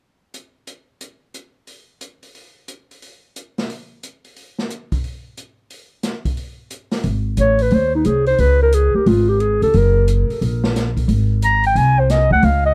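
Swinging and sophisticated, this short cut from a longer small-group jazz piece moves with a lilting swing feel in 4/4. An acoustic drum kit opens at 0.3 seconds, sounding distant and roomy, with hi-hat, a medium-tuned snare and a boomy kick, and it carries the music on its own for the first several seconds. At 7.0 seconds a plucked upright bass with steel strings arrives up front, its low lines woody and growly. Moments later, at 7.4 seconds, a dark, breathy clarinet takes the solo melody in a jazz style, with light vibrato and a touch of tape echo. Once the band is together, the harmony moves from Ab through Db5 and Gb before settling back on Ab, all set in a studio ambience.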